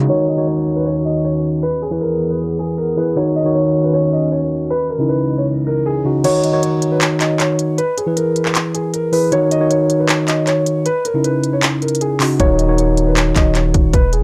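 Hard-hitting yet eerie, this half-time trap beat opens with a mellow, clean tine electric piano up front and a dark, intimate concert grand carrying the melody, its action noise audible under a low-pass filter and tape echo, while a warbling, detuned lo-fi pad drifts beneath as a filter sweep unfolds. At 6.2 seconds the pad drops out and an electronic trap kit arrives with crisp hats, handclaps and a crash, its kick held back until 12.4 seconds, when the hard-clipped kick lands alongside a deep, sine-like 808 bass. The gritty hardware recording carries transformer saturation and light reverb over an Eb Phrygian chord cycle, cut from a longer piece.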